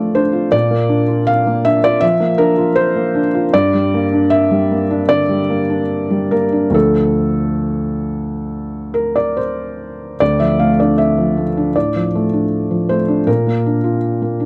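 Neoclassical minimalist piano in a melancholic, wistful mood, this brief excerpt from a longer piece features a solo felt-muted upright piano, soft, mellow and intimate with audible action noise, played rubato in 4/4 over a Dm, Bb, Gm progression, sitting up front in a dry, close 1970s-style studio sound with a touch of small room reverb.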